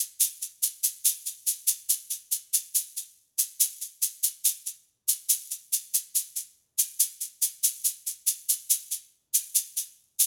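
A lone tube shaker, grainy and bright in a small, dry room and sitting up front, opens this sunny, breezy bossa nova excerpt at a straight 141 BPM in 4/4, carrying the music by itself from 0.2 s to the cut at 10.3 s, with a new section beginning at 7.9 s.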